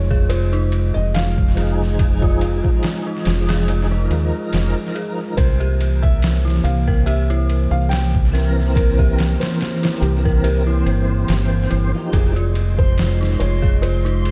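This echo-heavy digital ambience wraps a hypnotic, melancholic trip hop excerpt in F minor at 71 BPM, its swung sixteenths carried by a gritty, pitched-down sampler-style kit with a thumpy kick, ride and medium-tuned snare sitting up front in dub echo, over a round, tube-saturated dub bass moving between Fm7 and C7. A soft, felt-muted upright piano sings the melody through tape echo while a moody detuned analog pad holds sustained chords and an eerie, inharmonic FM bell spins chorused arpeggios. From 1.5 to 12.3 seconds a lightly overdriven tonewheel organ adds full accompaniment with slow rotary swirl and sampler grit, and at 12.2 seconds a reversed, granular texture rises dreamily in the background.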